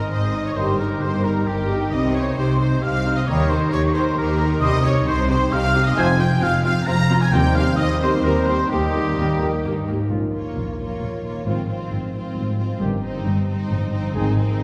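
The excerpt opens with full orchestral strings, a clear solo oboe, an airy flute section and a bright, ringing concert harp all sounding at once, setting a swashbuckling, adventurous cinematic mood at 133 BPM in a straight 3/4. A symphonic violin section carries the melody in the background, while a rich, expressive studio violin section, the oboe and the flutes add second lines above a lush viola accompaniment and thumb-plucked harp arpeggios. The low end is anchored by a focused double bass section and a close, lush cello section, the strongest parts in the mix. From 0.6 seconds, a dark, very quiet French horn section and a tight trombone section hold sustained chords, and a soft-attack trumpet section adds stabs. The oboe and flutes drop out at 9.6 seconds and the trombones at 9.9 seconds. At 10.1 seconds the harmony turns toward Bb minor as the strings, harp, horns and trumpets press on, all set back in a roomy scoring-stage reverb.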